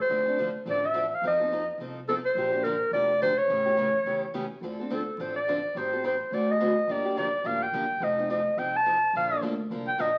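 Heard through the crackle of a very old 78 rpm record and a large studio's wet reverb, this fiery, bittersweet slice of acoustic jazz manouche swings at 212 BPM in D minor, tuned slightly flat to A4 = 436 Hz. Up front and close-miked, a breathy clarinet carries the melody with vibrato, a soft subtone and scooped notes, then takes a solo from 4.6 seconds as the chords move from Dm7 through D7b9 and Gm7 to a closing Bbmaj9. Beneath it, a picked steel-string parlour guitar with fresh strings gives a bright, boxy accompaniment, while a pizzicato upright bass on gut strings adds a woody, thumpy pulse.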